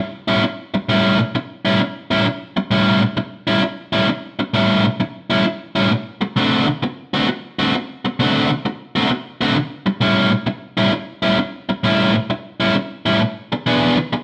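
A biting, overdriven electric guitar sits up front and carries this blues excerpt, entering at 0.3 seconds and playing through to the end at 14.2 seconds. Its picked tone is gritty yet warm, roaming from its low register up into the upper middle of the instrument. The feel is rollicking and laid-back, with a lazy swing in common time. The harmony moves from A7 to D7 at 5.9 seconds, back to A7, and on to E7 near the close. A moderate stone-room reverb and the sense of a band playing live together give the sound an earthy, in-the-room presence.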